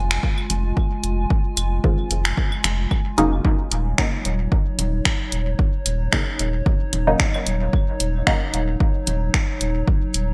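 Dub techno at 112 BPM in Eb dorian, this hypnotic, hazy cut from a longer piece rolls in 4/4 with a light swing on the 16ths. A warbling, nostalgic pad of detuned square and triangle tones with a sub octave holds sustained chords from the start, its slow attack and long release softened by chorus, built-in reverb and sidechain pumping, moving from Fm7 to Ebm7 at 3.4 seconds. Underneath, a round sine sub bass sits up front and pumps with the sidechain, while a punchy electronic kick and a tape-warm analog drum machine of finger snaps and hi-hat, the latter treated with gated reverb, drive the groove from a small room. Claves and congas, overdriven and layered, sit in the background in a larger space with dub echo and their own pumping. At 1.8 seconds a muted, detuned sawtooth chord stab enters with a short, plucked filter decay under a filter sweep, colored by chorus, phaser, cassette tape and dub echo, and it stops at 8.5 seconds. 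The overall sound is bright, 1980s-style digital production with little reverb on the whole mix.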